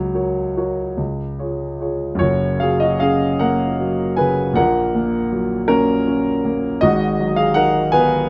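A grand piano sits up front and alone for the whole 8.3 seconds, its tone warm and natural, reaching from F#1 in the bass to G#5 at the top. This is a romantic classical nocturne in F# major and 6/8, moving slowly at around 46-54 BPM counted in dotted quarters, with a supple rubato that lets the time breathe. The mood is serene and nostalgic, a brief fragment lifted from a longer piece. The harmony opens on F# over C#, settles onto a plain F# chord at 2.2 seconds as a new section begins, then passes through F# over A# before reaching G#m7 near the close. A light reverb and a dark, warm production with softened highs give the sound an intimate, dusky glow.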